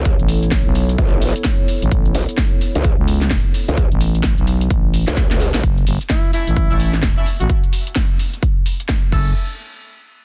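A dense, heavily limited and nearly dry mix carries this swaggering, gritty bass house excerpt at 129 BPM in F# minor, swung on the sixteenths. The drop opens with a punchy, tape-tinged electronic kick up front, a garage kit of cracking snare, hi-hat, shaker and crash, a thick growling FM bass, a bright, wobbling growl bass with formant filtering and saturation, and a detuned, moody analog pad with chorus in the background, all three synths under sidechain pumping. A drum fill at 5.2 seconds leads from Aadd9 to F#m7, where the growl bass and pad stop, and a breathy, whispered alto saxophone with delay enters at 6.1 seconds, joined at 6.3 seconds by tight, vintage jazz-style horn stabs that pump and echo to the close.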